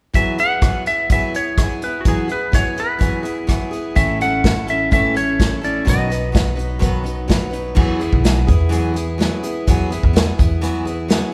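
Jangly and open-road, this folk rock and heartland rock excerpt moves at 126 BPM in E major, built on a bright picked steel-string acoustic guitar with audible finger squeak and an unplugged drum kit, played with bundle sticks up front, that adds crash, hi-hat, rim click, snare and a tight kick. A clean, twangy lap steel guitar carries the slide melody up front until 7.3 seconds. A woody pizzicato upright bass joins at 4.0 seconds as the chords shift from Eadd9 to A and B before settling back on Eadd9, all under light reverb.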